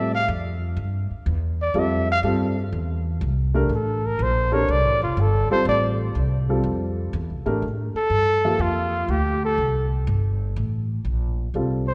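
A breathy, mellow trumpet sings a scooped, vibrato-laced solo through the first 7.6 seconds over a dark upright piano with audible action noise and a growly, woody pizzicato upright bass. The piece is an open, searching modal jazz excerpt in F major, swinging at 122 BPM in 4/4 from an Fmaj9 chord, tuned slightly low to A4 = 437 Hz, and set in the moderate reverb of a concert hall.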